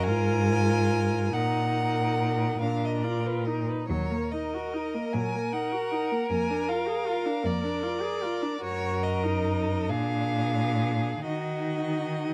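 The cello stands out most, sitting up front with a rich, expressive bass line bowed with vibrato, a soft attack and portamento between notes, ranging from Eb2 to Eb3. This is a slow, romantic classical movement for string quartet in Eb minor and 6/8, moving at roughly 40-53 BPM in dotted quarters with a rubato feel and a solemn, yearning mood. Above it, the first violin carries the melody between Bb4 and Ab5 in a smooth, even line with vibrato. The second violin sounds more distant, adding an expressive second line with portamento. The viola fills in a smooth accompaniment with a smooth top. All four players sound together throughout the 12.3-second passage, which is cut from a longer piece and moves through Fmadd11/Ab, Ebm/Bb, Bb, Bb7/F and Ebm/Gb before settling on Ebm at 11.3 seconds, all in a dark production with light reverb.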